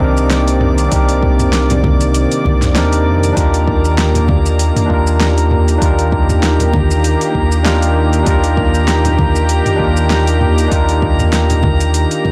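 Sunset chillout in Eb major at 98 BPM with a swung 16th-note feel, this warm, sunny excerpt moves from Cm9 to Ebmaj7 as a barky tine electric piano with digital delay and a lush, detuned sawtooth pad with chorus carry the harmony over a round sine sub bass with tube saturation, a deep electronic kick and a deep house kit of fat snare, metallic hats, shaker and toms in small room reverb, congas with hard hands entering at 1.7 seconds, and a glassy, drifting harmonics texture floating high above, all captured in a blown-out, overdriven recording with light reverb.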